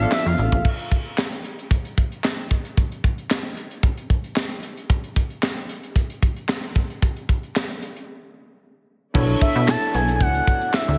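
A lush hall reverb gives this slick, funky early-eighties boogie funk fragment a big arena sound, with a high-tuned snare, tight kick, hi-hat, handclaps and crash cymbal running through the whole piece. A smooth, full-bodied portamento lead with chorus and slapback echo, a bright, bell-like tine electric piano, a very quiet, woody string section and a plucky, up-front analog bass with a ring-modulated edge sound together only briefly before dropping out by 0.7 seconds, leaving the drum kit alone. The strings and electric piano return at about 9.1 seconds over a new chord, the bass following a moment later, with the lead rejoining shortly after.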